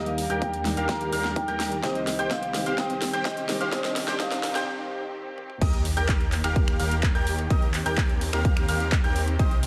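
This anthemic, euphoric festival progressive house excerpt in Eb major at 127 BPM opens with a mellow soft-mallet vibraphone melody through digital delay over a boxy felt-muted upright piano, lush distant bowed strings, high grand piano arpeggios under a filter sweep, a huge detuned supersaw riff and a thick chorused saw bass, the strings, both pianos, supersaw and bass pumping to the sidechain, while a big-room kit with a huge snare, metallic hats, snaps, claps, toms and crash fills through the build, a punchy up-front kick arrives at 0.4 s with both drum parts overdriven, a very quiet riser and sub drop sound beneath, and after a break at 4.7 s the full drop hits at 5.6 s in light small-room ambience.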